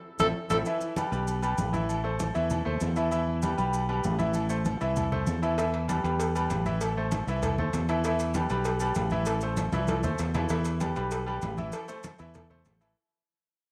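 Passionate and fiery, this salsa clip at 195 BPM in E minor bursts open with a drum fill and band accent as a forceful tenor saxophone with vibrato and slapback echo cries out only until 0.6 s, leaving a brilliant, present concert grand piano and a round, punchy fingered electric bass up front over alternating Am and Em chords, while thick-skinned congas, grainy maracas, ringing, distant timbales with agogo bells and a tight, high-tuned cowbell that returns at 5.6 s fill out the background of an echo-chamber room before the music fades from 10.5 s.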